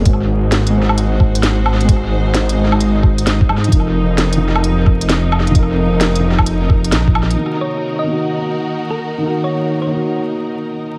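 An echo-heavy mix with light reverb and a bed of vinyl crackle sets a ghostly, melancholic tone for this future garage excerpt at 131 BPM, swung on the sixteenths. A soft, thick-felt upright piano carries the accompaniment beside a lush, bowed string section with vibrato and a vintage 12-bit sampler grit; both pump under sidechain and are dulled by a low-pass filter, with analog delay trailing the piano. Beneath them, a menacing, detuned saw bass sits up front, saturated and evolving with a filter swell. A muffled, pitched-down kick thumps in studio ambience, while a produced kit adds smooth hats, a woody snare and woodblock touched with tape echo. The harmony moves from Ab7 to F7sus4 before settling on Eb minor at 7.4 seconds, where the bass and kit fall away and a filter sweep moves across the piano. A round, tine-like FM pluck with chorus and delay then carries a brief, dark melody over the strings and piano.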